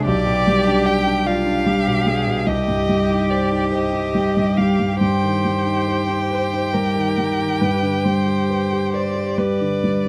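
Classical and elegiac, this slow romantic movement for piano quartet drifts in 12/8 at 44-50 BPM (dotted quarters) with a yearning rubato, tuned to A4 = 441 Hz, and moves through G7/B, Cm, Cm/G and G. A focused, up-front violin carries the vibrato-laden melody with a smooth top, while a second, more distant violin and a close, even cello weave bowed inner lines beneath it. A vintage-sounding grand piano sits forward in the accompaniment, all within a dark, warm production with light reverb, cut from a longer piece.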